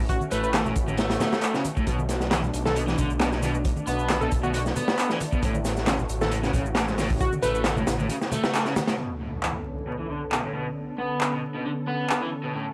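A swung 135 BPM breakbeat in 4/4 and B minor struts with gritty swagger, built on an up-front, crunchy drum kit with a punchy kick and high-tuned snare, tape-warm analog shaker and handclaps, and soft-handed congas in the background, while a thick, menacing detuned saw bass and a double-tracked overdriven guitar riff anchor the groove, a catchy plucky unison lead with an AM-radio tone, 12-bit sampler texture and analog delay rides above a swirling phased pad that pumps beneath, and after a band accent at 8.5 seconds an electronic impact lands at 9.0 seconds as the guitar takes a filter sweep into a Bm9 chord, set in light reverb and vinyl crackle on a dry hardware sound.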